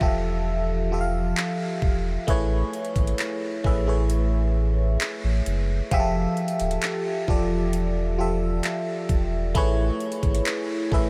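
Dreamy and tender, this short contemporary R&B passage drifts at 66 BPM in 4/4, alternating between Fmaj7 and Amaj7 chords. A glassy, bell-like FM electric piano carries the accompaniment through chorus and phaser, over a round, sine-like sub bass and an electronic trap drum kit with a knocking kick, metallic hi-hats and handclaps. Everything sits up front yet is soaked in a huge ambient reverb with a 7.8-second tail, giving the mix a hazy, floating glow.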